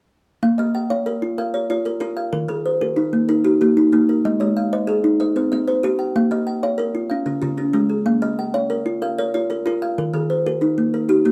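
Southern African traditional music in an mbira-style interlocking cycle, this hypnotic, warm excerpt moves at 126 BPM in a straight 12/8, set in a Bb equiheptatonic tuning that passes through Bbm, Eb, Ab, Cm and Db. Two kalimbas play arpeggios up front. The first enters at 0.4 seconds with short, woody, dark, smooth thumbnail plucks. The slightly quieter second joins at 0.6 seconds with short, airy thumb plucks, and both share a hollow-box tone as they continue to 11.3 seconds. Light reverb and a dark, warm production round out the sound.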